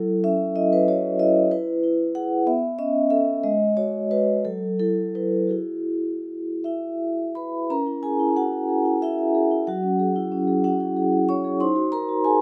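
Playful and warm, this 12.4-second excerpt of a contemporary classical piece for solo vibraphone drifts in a rubato 6/8 at roughly 52-63 BPM in dotted quarters, its medium mallets drawing a metallic, ringing, full tone with slow motor vibrato from F#3 to C#6, close-miked, dry and up front within light reverb, as chords like F#m7, Bsus2 and Eadd9 in E major give way at 7.7 s to a C# minor passage colored by C#m6, F#sus2 and D#m6.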